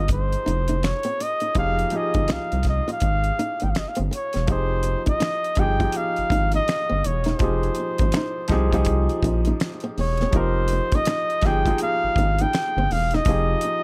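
An echo-heavy mix with light reverb frames this introspective, late-night R&B and neo-soul passage in F minor, moving at 82 BPM in 4/4 with a swung sixteenth-note feel and resting on an Fm9 chord. Up front, a warm flugelhorn carries the melody through tape echo, while a fingerpicked flamenco guitar, also treated with tape echo, sits in the background as a second line over polished baby grand piano accompaniment. A rubbery, dark, saturated square-wave bass and a dry 70s drum kit with a fat snare, tight kick, hi-hat and finger snaps anchor the groove, and the music moves into a new section at 4.5 seconds.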